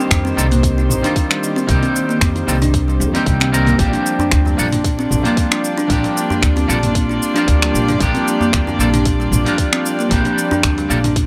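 Swung sixteenths in 4/4 drive this meditative, hypnotic organic downtempo excerpt: a tight, tape-toned electronic kick sits under an overdriven, layered deep house kit of cabasa, finger snaps, hi-hat and toms, while a very quiet, close and dry darbuka joins at 3.8 seconds. A thumpy pizzicato upright bass and thumb-plucked kalimba arpeggios with delay anchor the harmony as it moves from Cm7 to Gm7/Bb, and a twangy clean electric guitar adds accompaniment through harmonic tremolo, sidechain pumping and delay. Reedy bowed strings hold sustained chords with their own sidechain pumping, and a barely audible bronze singing bowl rings beneath, all set in light reverb and small room ambience.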